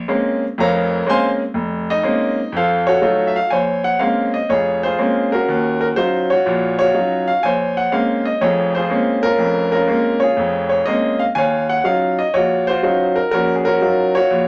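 A brilliant, up-front grand piano sits in a wet studio ambience with a short decay in this moody, cool fragment of solo jazz, cut from a longer piece. At 122 BPM in 4/4 with a swung eighth-note feel, the piano ranges from deep F1 up to C6 over Bb minor harmony, moving from Bbm9 to F7b9 in the brief opening. A longer passage follows from 3.5 seconds, turning between Bbm9 and Ebm9 until 14.5 seconds.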